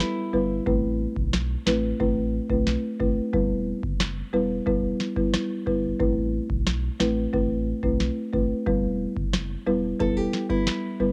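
Sultry and tough, this short dancehall cut from a longer piece moves at 90 BPM in a straight 4/4, set in A dorian as the chords sway between Em and Amadd9. A woody folk marimba played with soft mallets carries the accompaniment throughout, close-miked and up front, its round, rustic tone pumping under sidechain compression and softened by cassette tape. A booming analog drum machine drives the groove with a deep kick, rim click and a tonal snare, dry and tape-colored with the grit of a vintage 12-bit sampler, until it stops at 10.8 seconds. Underneath, a sub bass with an added octave enters at 0.3 seconds, full and mellow with a fast attack and sustained sine-and-triangle body. A fingerpicked nylon-string guitar appears only briefly, in its opening moment and again from 10.0 seconds, adding classical arpeggios. The whole home cassette recording sits in a small room with light reverb, giving it an intimate, lo-fi character.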